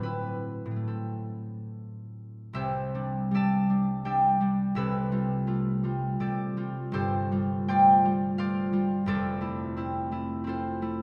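A solo concert harp opens on an Am6 chord, setting a wistful, gentle mood for this short classical fragment taken from a longer piece. Played in a flowing triple metre with a free, rubato feel, the fingerpicked harp sounds bright and ringing, sitting up front while spanning from a deep F1 to a high A5. At 2.5 seconds the music moves into a new passage on Cadd9, then drifts through G9/C, F69/C and G9sus4 before settling on Fmaj7 at 9.1 seconds. The instrument is tuned slightly high, with A4 at 444 Hz. A lush concert hall reverb with a long 1.9-second decay surrounds the harp, and the listener seems placed further back in the room, lending the performance a spacious, distant glow.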